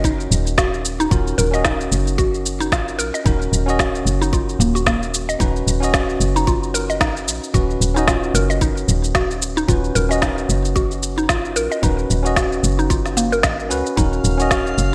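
Bright, 1980s-style digital production and a moderate plate reverb frame this short cut from a longer organic downtempo piece, whose mood feels warm and earthy with a swung sixteenth-note feel. A tight electronic kick and an up-front electronic shaker and woody snare, both touched with studio reverb and the shaker-and-snare pair also gated, drive the groove from the opening second. Underneath, a soft, round FM bass sits dark and forward with a sidechain pump, while a clean tine electric piano heard through a combo amp lays down chords with its own sidechain pulse and delay. A mellow, mallet-like FM pluck with a faint noise layer plays arpeggios through chorus, phaser and delay, its percussive strikes decaying. At 14.1 seconds a calm, glassy texture of drifting sine overtones slowly fades in in the high register, shimmering with chorus and its own reverb just before the cut ends at 14.9 seconds.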